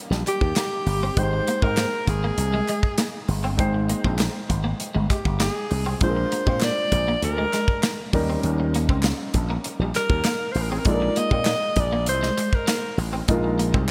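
Bright, 1980s-style digital production and a lush hall reverb give this short cut from a longer jazz-funk pop track a glossy, urban sheen. At 99 BPM in a straight 4/4 in Eb major, a modern studio drum kit with a tight kick and medium-tuned snare sits up front beside a growly, punchy slap bass run through an envelope filter. A concert grand piano with deep bass, short sustain and analog chorus fills in the accompaniment. In the background, a twangy, slightly broken-up electric guitar plays a compressed, picked riff with ensemble chorus. From 0.3 seconds until 13.0 seconds, a breathy alto saxophone carries the melody prominently with vibrato and a pop-style tone. From 0.3 seconds to the end, a very quiet, crisp group handclap adds dry percussion. The harmony moves from Eb7 through Abmaj7 and Bb7, back to Eb7, and on to a final Bb7sus4.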